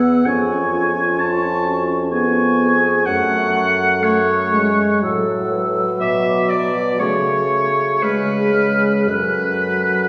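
In a slow, rubato 3/4 that drifts between 56 and 66 BPM, this elegiac, melancholic slow movement for wind quintet in F# minor unfolds as a brief passage cut from a longer piece. A hollow, airy silver flute carries the melody high in its register, its tongued notes touched with vibrato and sounding distant. Beneath it, a clear, punchy oboe sits up front with the second line, shaded by light vibrato. The inner accompaniment pairs a dark clarinet, set in the background, with a French horn whose soft attack and close, warm tone give the texture a gentle core. A dark bassoon with a smooth top anchors the bass as the harmony moves through B minor colour and a C#7 before settling back on F# minor at 9.1 seconds. A wet concert hall reverb places the ensemble further back in the room, lending the whole a roomy, mournful glow.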